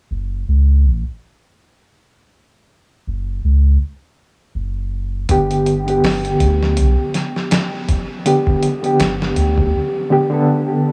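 Trip hop at 81 BPM, this hypnotic, smoky fragment from a longer piece moves with a loose sixteenth-note swing. A deep, round sine sub bass opens alone from 0.1 s, sitting up front over an F#5 chord. At 5.3 s the harmony shifts to G as a reedy, worn electric piano enters, slightly out of tune and lightly overdriven, with fast tremolo, tape echo and the grit of a vintage 12-bit sampler. A compressed, sampler-style drum kit arrives at the same moment, with a thumpy kick, medium-tuned snare and hi-hat carrying tape-warm character and studio ambience. The mix is dreamy and soaked in a huge ambient reverb, and the electric piano rings on alone after the bass and drums stop at 9.7 s.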